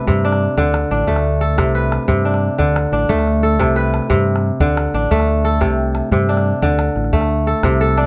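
Set in a straight 12/8 at 119 BPM counted in dotted quarters, this short cut from a longer piece of West African traditional string and xylophone music has a flowing, joyful feel. The kora leads from the first moment, playing ringing, fingerpicked arpeggios between C3 and B4, crisp and up front in the mix. A fingered electric bass enters at 0.1 s, its round, direct tone sitting low between A1 and G2, while a small calabash sits close and dry in the background. The harmony rocks between C5 and D5 chords every second or so across the whole passage, which lasts about 8 seconds. A moderate studio reverb and a dark, warm production give the ensemble a gentle sense of space.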